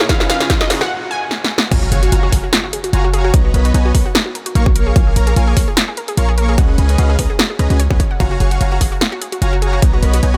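Swung, half-time 148 BPM future bass in F# major. It is euphoric and lush: a brief build-up with a background riser and impact, plus a short unison-pluck melody, leads into a drop at 1.7 s, while throughout a huge, detuned supersaw riff, bright pumping pluck arpeggios with dub echo, a deep, boomy 808-style bass and a punchy, up-front electronic kick and dance kit with crash, hi-hat and snare ride chords from C#7sus4 through F#maj9, Bmaj7 and A#m7 in a digital ambience.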